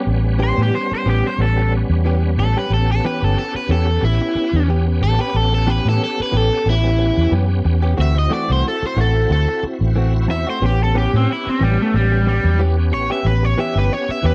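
A shouting tonewheel organ with key click, slow rotary speaker and chorus vibrato opens alongside clean, compressed stabs from a direct-recorded electric guitar bathed in spring reverb, setting up a rollicking, gritty blues groove in A mixolydian at 91 BPM with a swung 4/4 feel. A round, foam-muted fingered bass sits dark and up front beneath them, and at 0.4 seconds a crunchy overdriven guitar takes a picked solo through phaser and slapback echo over the A9, D9 and A9 changes. The sound is a dry, close 1970s-style studio recording, and this passage is cut from a longer piece.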